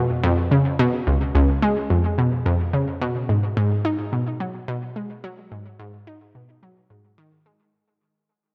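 A lush hall reverb with a 2.8-second tail surrounds this short ambient fragment, cut from a longer piece and fading out across its full length. A lone analog pluck synth carries the whole passage from 0.0 to 7.6 seconds, sitting up front and ranging from Db2 up to Eb4. Its tone is round and vintage, built from detuned sawtooth and pulse waves with a fast attack and a decaying filter pluck, and the sound keeps evolving. Chorus gives it a warbling shimmer, and an analog delay adds echoes. The mood is mysterious and cosmic, moving at 108 BPM in a straight 4/4 feel.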